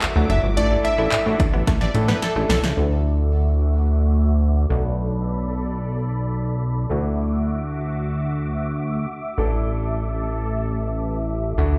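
Carefree and euphoric, this dance-pop excerpt in D major moves at 109 BPM in a straight 4/4. It opens on a drop where a punchy analog drum machine drives kick, snare, hi-hat and handclaps up front, with a fill from 1.7 seconds, while a catchy, detuned plucky lead with vibrato and digital delay carries the melody and a twangy, direct-recorded clean guitar riff with subtle chorus sits in the background. The lead and guitar stop at 2.6 seconds and the drums at 2.8, leaving a glossy, chorused synth bass pumping beneath a brilliant grand piano and a soft-attack supersaw swell of sustained chords, both low-pass filtered and pumping through a long filter sweep, all set in a large studio reverb.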